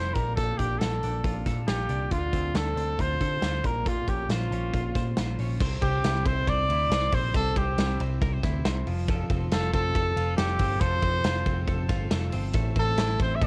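This dry home recording has the grainy character of cassette, and that tape coloring falls on the trumpet and the drums. The music is a bright, youthful slice of jangly indie pop in a straight four, cut from a longer piece. A twelve-string electric guitar plays clean, twangy, compressed arpeggios throughout and sits a little back in the mix. A vintage electric bass, picked and foam-muted, gives a dark, round, punchy low end. From 0.1 seconds, a big acoustic rock kit sits up front with bright cymbals, a medium-tuned snare and a tight kick, sounding natural in a large room. Over this a clear pop-style trumpet carries the solo melody with light vibrato, moving from Bbmaj7 and Dm7 into a new section at 5.6 seconds built on C, Fadd9 and a closing Am.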